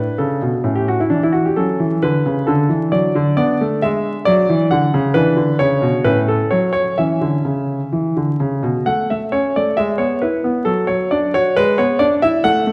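Set in a reverberant recital hall with a faint vinyl crackle, this cheerful, elegant classical-period piano sonatina in A major moves at 133 BPM with a rubato feel, its solo grand piano clear, smooth and up front with a vintage, short-sustained tone, turning to a new section at 8.9 s before the cut-off fragment of a longer piece ends at 12.7 s.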